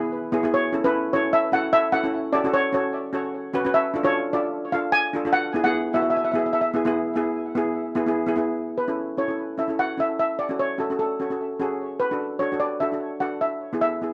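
Bouncy and carefree, this short calypso cut at 149 BPM in A major opens with a mellow, vintage-toned double-seconds steel pan accompaniment played with soft rubber sticks, joined at 0.5 seconds by a bright, shimmering cello-pan melody struck with hard rubber sticks and colored by tape echo, both held up front in a dry, close 1970s-style studio sound.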